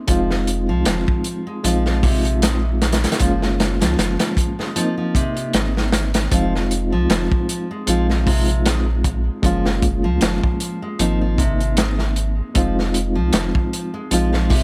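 A small room's light reverb surrounds this brooding, cinematic trip hop excerpt at 77 BPM in F phrygian, where a gritty, saturated breakbeat kit with a tight kick, a medium-tuned snare, hi-hat and a rolled-off top sits up front beside a deep, round sine sub bass, while a reedy, clean electric piano with fast tremolo and a full-bodied, fingerpicked nylon-string guitar playing arpeggios through tape echo cycle over Fm7, Bb9sus4, Gbmaj9 and Ab with a swung sixteenth-note feel.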